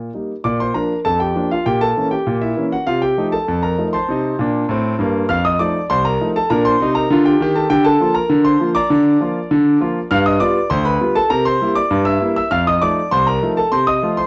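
A straight two-beat pulse in 2/4 drives this jaunty, lively ragtime fragment, cut from a longer piece. A single warm concert grand piano carries everything from 0.0 to 14.3 seconds, ranging from deep bass notes up into its upper register. Its tone is intimate, polished and up front, with long sustain and audible action noise that puts the listener close to the instrument. The harmony moves from Bb through a diminished chord and an F7 back to Bb before turning to a G7, C7 and F7 run near the end. A wet studio reverb surrounds the piano, while worn, warbling old cassette tape adds a drifting pitch waver and a dull, muffled top.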